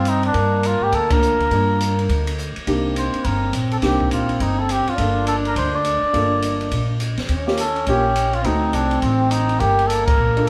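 Swinging and cool, this fragment of small-group swing and bop jazz in G minor moves at 207 BPM in 4/4, with a veiled, cup-muted trumpet carrying the melody in plate reverb over a clear, vintage trombone second line, a woody, growly pizzicato upright bass and an open acoustic drum kit with dark cymbals, a high-tuned snare and a boomy kick, while a warm concert grand piano with short sustain enters at 1.1 seconds and band accents strike at 1.1 and 10.0 seconds over changes from Gm7 through Cm7, Eb7 and D7b9 to Gm, heard from further back in a wet studio room.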